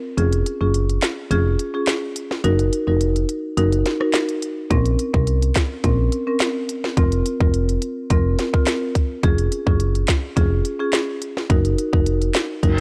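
Dancehall at 106 BPM with a bouncy, tough mood, where a tight, sharp electronic drum kit with handclaps, rim clicks and crisp hats sits up front beside a punchy, round FM bass and a woody rosewood marimba accompanying through chords like Db/F, Gb6 and Bbmadd9, opening on a break until 4.7 seconds and closing this cut from a longer piece with a drum fill at 12.6 seconds and a brief reverse cymbal at 12.7 seconds, all in a dry, gritty cassette-tape ambience.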